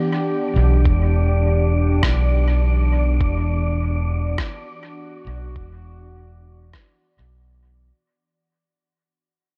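Ambient dub at 102 BPM in E minor, meditative and spacious, opening on an Em9 chord as a warbling, nostalgic pad with chorus and reverb sustains alongside a breathy, wind-like tuned noise texture. An overdriven, punchy fingered electric bass sits up front from 0.6 seconds, joined at 0.9 seconds by a thumpy, muffled electronic kick drum. A pitched-down electronic rim click arrives at 2.0 seconds, low-pass filtered and trailed by dub echo, while this brief cut fades out across its whole length.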